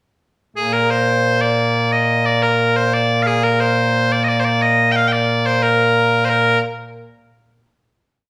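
Bagpipes carry this short, complete piece of traditional pipe music, playing solo from 0.6 to 6.6 seconds with a bright, piercing tone that sits up front. The mood is ceremonial and proud, set in a straight two-beat metre. After a brief pickup, the pipes spin a continuous modal melody decorated with ornaments through a single main section, then land on a final note as the piece closes. A large studio reverb, heavy in the mix with a 1.2-second decay, surrounds the instrument and gives it a sense of space, as if it were heard live in one room.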